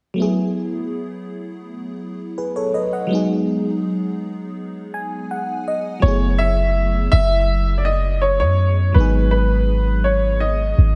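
R&B at 82 BPM in F# dorian, late-night and longing, this excerpt from a longer piece opens on a lush, detuned FM electric piano with a soft pad layer, colored by chorus and phaser, moving between F#m11 and G#m7 and playing a fill from 4.6 to 6.0 seconds, before a clear grand piano melody with subtle chorus and diffuse ambient delay and a deep, boomy 808-style bass enter at 6.0 seconds, all set in a dreamy mix soaked in a lush hall reverb.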